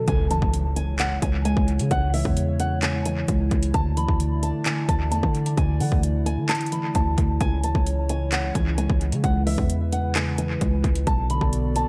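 A half-time trap groove at 131 BPM in 4/4 anchors this brooding, eerie hip hop excerpt in C# phrygian, driven by an up-front electronic drum kit of hard-clipped kick, metallic hi-hats and handclaps, overdriven and echoed with analog delay. Beneath it, a deep, boomy 808-style bass with a sine core and a noise layer strikes with a fast attack and decays mellowly. A dark, thumb-plucked flamenco guitar carries the melody in a high register, finger squeaks audible, its tone softened by a low-pass filter and trailed by analog delay. Muted, felt-like synth keys add intimate, warbling, vintage accompaniment under chorus, filtering and delay, while a moody, detuned analog pad with a wave-folded edge and slow attack sustains chords in lush chorus. An electronic impact sits in the background from 0.1 to 1.9 seconds, while across the excerpt the harmony moves from C#m to Dsus2, back to C#m and onto Bm7, the whole mix carrying light reverb and heavy echo.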